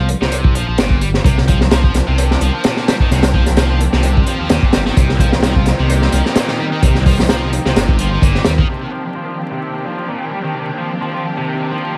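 A crunchy breakbeat drum kit sits up front, its punchy kick and high-tuned snare sounding saturated and gritty with a rolled-off top and the feel of a small room, swinging on a funky, raw breaks groove. Beneath it, a dark detuned saw bass rumbles and beats with a deep, sustained tone and tube saturation. A high-gain distorted guitar, bright and double-tracked, picks a low riff through distortion, a low-pass filter and digital delay, continuing to 12.0 seconds. From 1.2 seconds, a rich symphonic string section holds smooth, bowed chords with light vibrato, sounding distant under 12-bit sampler grit, sidechain pumping and its own low-pass filter. When the drums and bass stop at about 8.7 seconds, the guitar and strings carry the closing passage over a light reverb and vinyl crackle in this cut from a longer piece.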